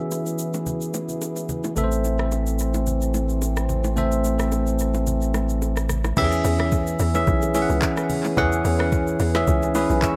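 An echo-heavy mix with light reverb carries this soulful, relaxed amapiano excerpt in E major at 109 BPM with a swung sixteenth feel, as a bell-like, up-front tine electric piano with tape echo and a mellow French horn section with sidechain pumping hold E6 and Am chords. A smooth R&B kit of soft kick, woody snare, metallic hats, rim clicks, handclaps, shaker and crash plays with bongos and congas, hit with hard hands in the background, while a round sine sub bass enters at 1.8 seconds. After a filter sweep, the drop at 6.2 seconds hands the low end to a hollow, bouncy log drum bass.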